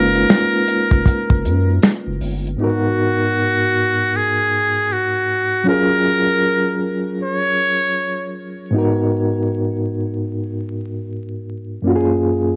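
A buzzy, breathy muted trumpet with light vibrato and scooped notes carries the jazz-style melody of this melancholic, hazy lo-fi hip hop fragment until 8.3 seconds, over a gritty, overdriven reed electric piano with fast tremolo and cassette-tape color that plays throughout, while a deep, saturated sine sub bass and a dry, dark soul kit of finger snaps, hi-hat, tight kick and snare drop out at 2.6 seconds, all wrapped in home-cassette grain, vinyl crackle and moderate reverb.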